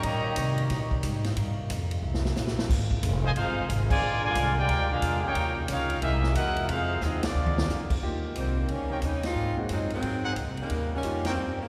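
Joyful and swinging, this big band swing passage opens with a clear, vintage trumpet section carrying the melody over a dark trombone second line, a distant, mellow trombone bed of sustained chords, a woody, growly upright bass and a punchy drum kit with fills, all set in a long, echoing church reverb, before a brilliant upright piano enters at 8.0 seconds and a close-miked, bright saxophone section takes over the melody at 8.4 seconds, with soft-attack trumpet stabs tucked in the background.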